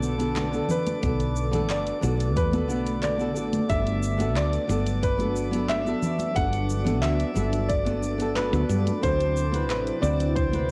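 A straight 4/4 groove carries this relaxed, smooth sunset chillout excerpt: a smooth R&B drum kit of handclaps, hi-hat and shaker sits low with background congas, while an overdriven electronic kick adds depth from 1.0 s. Up front, a growly, round fretless bass anchors the chords Bm7, Gmaj7 and D13, as a dark fingerpicked flamenco guitar, with audible finger squeak, accompanies a worn baby grand piano melody colored by cassette tape and tape echo. Behind them, a shimmering pad with chorus and phaser and a glassy, drifting harmonics texture hold long sustained tones, all captured with a homemade cassette character.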